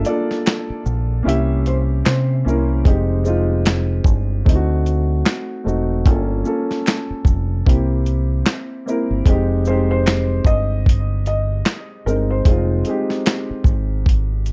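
A dark, hazy lo-fi hip hop excerpt with light reverb, built on a gritty, compressed sampler-style drum kit with a thumpy kick, handclaps, hi-hat, shaker and snare, and a round, dub-deep fingered electric bass, both up front at a swung 75 BPM in F minor. A woody, vintage upright piano carries the chords throughout through low-pass filtering and plate reverb, moving from a rootless Gm9 through Fm9 and D7b9, while a soft, felt-muted upright piano with audible action noise and tape echo sings the melody from 0.0 to 2.7 seconds and again from 9.7 seconds. Very quiet, distant finger snaps sit far back in a large room, adding to the nostalgic mood.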